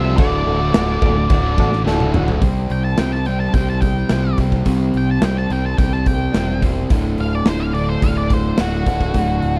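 Driving and confident, this classic rock passage, cut from a longer piece, moves at 107 BPM in a straight 4/4 and is tuned slightly below standard pitch. A gated 80s drum kit sits up front, with a punchy kick, a medium-tuned snare and bright cymbals ringing in a gated stone room. The kit enters just after the start, and a drum fill from 1.9 to 2.4 seconds launches the octave-fuzz lead guitar into a solo running to the end. A growling, overdriven fingered bass is also up front, beneath a wall of picked riffs: a biting overdriven guitar, a hollow-body semi-hollow guitar in the background, and a double-tracked distorted guitar that drops out after 2.4 seconds. In that opening stretch, a reedy, worn and slightly out-of-tune electric piano adds clean accompaniment through its built-in speakers, its spring reverb contrasting with the otherwise dry sound. The harmony rests on D, shifts to a C5 power chord when the solo begins, and returns to D near 6.9 seconds.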